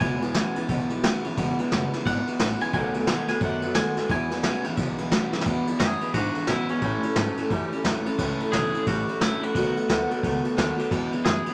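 A swung 4/4 feel at 176 BPM drives this rollicking, upbeat rockabilly in E major, with a vintage brush drum kit of punchy kick, medium-tuned snare and ride cymbal sitting up front beside a picked, full-bodied dreadnought acoustic guitar with fresh strings. A thumpy, woody upright bass with gut strings holds the low end while an electric guitar through a small old amp plays a lo-fi, slightly broken-up riff. A clean, compressed, twangy electric guitar takes a solo over the first 5.5 seconds, and a drum fill at 5.3 seconds leads into the second section, all inside a wet studio reverb with a faint mains hum.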